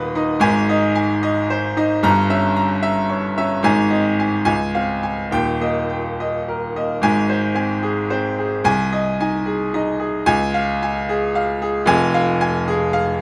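A bright, up-front baby grand piano carries this brilliant, sparkling classical virtuoso study alone for 13.2 seconds, moving in a rubato 6/8 at 74 BPM in Ab major through chords such as Gdim7, Dbmaj7 and Fm, with its open, brilliant tone set in moderate studio reverb, in an excerpt cut from a longer piece.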